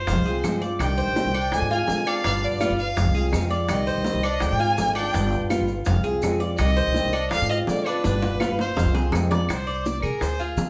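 A bowed violin, a bright, metallic Cuban tres and a dark upright bass open this short cut from a longer Cuban son and guajira piece, nostalgic yet danceable in a straight four. The violin carries the melody up front with a warm tone, vibrato, soft attack and expressive portamento, set in plate reverb, while the tres spins arpeggios on its double strings and the woody pizzicato bass sits close and prominent. A dark, boxy fingerpicked old ladder-braced acoustic guitar fills in the accompaniment, and round, low-tuned, compressed and saturated bongos drive the groove alongside grainy maracas and distant claves in the background. The harmony cycles through Fm, Cmadd9, Dm7b5 and G7, with a drum fill from 8.0 to 9.5 seconds leading into a brief violin solo over a Csus2 chord at the close. The whole band is heard from further back in a studio room with a fairly wet reverb.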